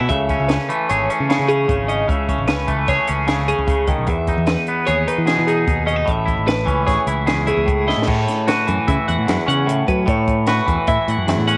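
A twangy, up-front electric guitar carries the accompaniment in this bright, wistful math rock and midwest emo passage, cut from a longer piece and moving at 150 BPM in 5/4 with a straight feel in A lydian. Above it, a clean, compressed twelve-string electric guitar spins arpeggios through phaser and analog delay, while a growly, direct electric bass anchors the low end. A compact cocktail drum kit with a high-tuned snare, dark cymbals and a punchy kick plays dry, colored by cassette tape. The harmony drifts from Amaj7 to Emaj7 and back, and a drum fill at 7.9 seconds leads into a new section at 8.1 seconds that settles on A69. Light reverb and a homey studio ambience give the whole cassette recording an intimate, lo-fi charm.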